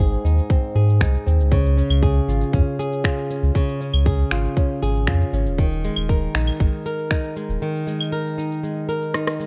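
Set in a digital ambience, this autumnal, wistful folktronica fragment at 118 BPM in a straight 4/4 features an up-front, boxy, fingerpicked flamenco guitar with finger squeak and tape echo playing arpeggios over Ab, Db and Ebsus4, while a round, sine-like sub bass holds sustained low notes until 7.6 seconds, a tight electronic kick runs from 0.5 to 7.2 seconds, and tape-warm electronic shaker, finger snaps, claves and rim click continue to a closing drum fill at 9.1 seconds.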